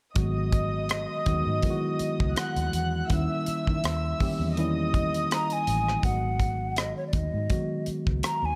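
A worn, slightly out-of-tune tine electric piano opens this cinematic, silky excerpt of lush 1970s-style soul, its clean tone coming through a combo amp and sitting up front. Almost at once a dark string section joins, bowed sul tasto with a soft attack, a floating, smooth top and a pure ensemble sound. Alongside it, a round, foam-muted, amped electric bass and an airy, polished acoustic drum kit settle into a gently swung groove of hi-hat, punchy kick and rim click. The harmony moves from G#m7 to D#7b9 and back. A breathy, hollow metal flute takes the melody from 5.3 seconds, up front with vibrato and lifted highs, and the strings stop at 6.0 seconds as a new section begins. Light studio reverb frames the small-room sound.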